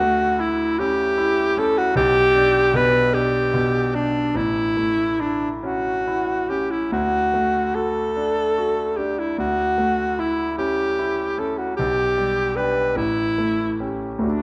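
Romantic classical music for alto saxophone and grand piano, lyrical and tender, moves at a slow, rubato 44-52 BPM in 6/8, with the clear, vibrato-rich saxophone singing an up-front melody with a smooth top over the bright, brilliant concert grand's deep-bassed accompaniment, both heard throughout this short cut from a longer piece in a wet recital hall with a 1.8-second reverb.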